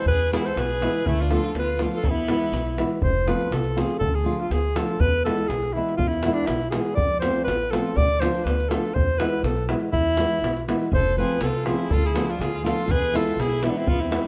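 A straight 2/4 pulse from a tight, band-limited davul and a woody pizzicato upright bass drives this virtuosic, bittersweet Balkan wedding-band piece, cut from a longer performance, while a small, dark fingerpicked nylon-string guitar fills in the harmony. Up front, a warm alto saxophone carries the melody in a classical style with vibrato and a smooth top. A bright, focused bowed violin adds a second line with its own vibrato from 0.0 to 2.8 seconds and returns at 11.0 seconds, all set in a moderate recital-hall reverb with a dark, warm production.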